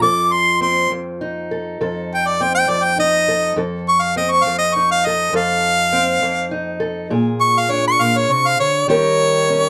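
A clear harmonica takes the lead from the first moment, playing an up-front, close-miked jazz-style solo full of vibrato and scooped notes, with a slapback echo trailing each phrase. Beneath it, a fingerpicked steel-string acoustic guitar in parlour style supplies a dark, boxy accompaniment that sits lower in the mix. The mood is gritty yet laid-back, an acoustic country blues in a 12/8 metre with a straight feel. The harmony rests on F7 before moving to Bb7 at 7.1 seconds and Eb7 at 8.9 seconds. Light reverb and close, detailed microphones give this short cut from a longer piece an intimate, present sound.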